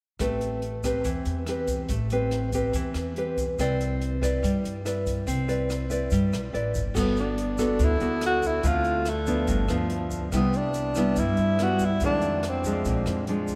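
A straight 4/4 bossa nova pulse at 142 BPM sets a relaxed, sophisticated mood from 0.2 seconds, carried by a thumb-plucked classical nylon-string guitar up front, a woody pizzicato upright bass on steel strings, and an open jazz drum kit with dark cymbals, a boomy kick, hi-hat, rim clicks and crash. A grainy, bright egg shaker with a vintage, band-limited tone sits in the background. The guitar moves through Am9 and Cmaj9 before the harmony shifts at 7.0 seconds to Gmaj9, Dm7, G7 and Cmaj7, closing on Fm7 and Bb7. At that same moment a mellow tenor saxophone steps forward as the solo voice, playing in a jazz style with subtone, light vibrato, scooped notes and a smooth top until 13.3 seconds. A wet cathedral reverb with a 5.5-second tail places the whole ensemble in a vast, echoing space, and the clip is cut from a longer piece.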